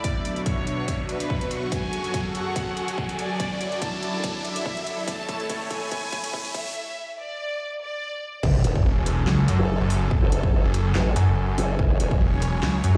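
Heavy wobble dubstep in F# minor at 143 BPM with a swung half-time feel, this chaotic excerpt builds from a clear, distant chamber violin melody with gritty 12-bit sampler texture and dub echo over a lush, airy supersaw pad, rich background strings, a riser with sub drop, a dubstep kit with a huge snare and metallic hats, and a punchy up-front kick, through a drum fill and a break at 6.8 seconds, until the drop at 8.4 seconds unleashes a saturated formant-sweep wobble bass with chorus, joined at 8.9 seconds by a snarling, growling distorted saw bass, all in a big bare-room sound.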